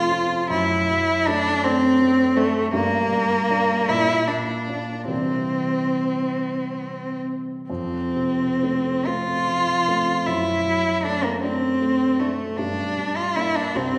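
Lyrical and tender, this romantic classical duo moves in a rubato 6/8 lilt, with a rich, smooth bowed cello singing the melody up front and close, its even tone colored by vibrato. Beneath it, a dark, mellow baby grand piano supplies the accompaniment with long sustain. The pair sits in the reverberant glow of a recital hall, and the passage is cut from a longer piece.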